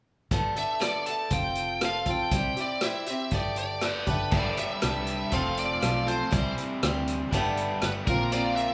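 Open-road and nostalgic, this brief folk rock and heartland rock excerpt in G mixolydian moves at a straight 120 BPM, with a boxy, up-front picked swing-style acoustic guitar, a dark, round fingered electric bass and a vintage drum kit with dark cymbals and a punchy kick carrying a Gadd9, F and C progression, while a bluesy, distorted lead guitar takes the melody from 0.6 seconds and a bright, double-tracked cranked stack guitar adds an overdriven riff from 4.3 seconds, all set in a rough home demo mix with light small-room reverb.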